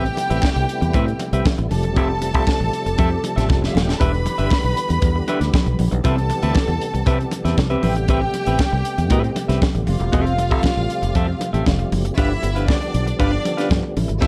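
A straight disco groove drives this sultry excerpt, carried by a tight funk drum kit with a tight kick, a high-tuned snare and hi-hat sitting up front in a small-room sound, plus a short drum fill at 3.5 seconds. A foam-muted fingered electric bass, direct and prominent, anchors the low end, while bright, damped congas with hard hands tick away in the background. A clean, picked electric guitar fills out the accompaniment, and a fat tonewheel organ holds sustained chords through chorus vibrato and a slow rotary speaker, its key click audible. Alongside them, a lush bowed string section plays a smooth, even second line with rich ensemble vibrato. The harmony moves through Am9, Fmaj9, Em7 and Cmaj7 before shifting to a G7 at 12.2 seconds as a new section begins, all wrapped in a dark, warm studio production.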